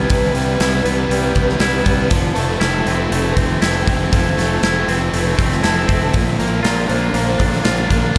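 A dreamy mix soaked in a huge ambient reverb opens this blissful, wistful shoegaze and dream pop excerpt at 119 BPM in straight 4/4, moving from Cmaj7 to Fmaj7 at 2.1 seconds and to Bb at 6.1 seconds. A biting overdriven guitar with subtle chorus and a twangy, clean electric guitar with reverse reverb play riffs over a growly fuzz bass, while a boxy, shimmering twelve-string acoustic guitar picks octave-doubled arpeggios in the background through ensemble chorus and diffuse delay. A gated 80s drum kit enters at 0.1 seconds, up front and airy, with a punchy kick and medium-tuned snare in a big, gated room.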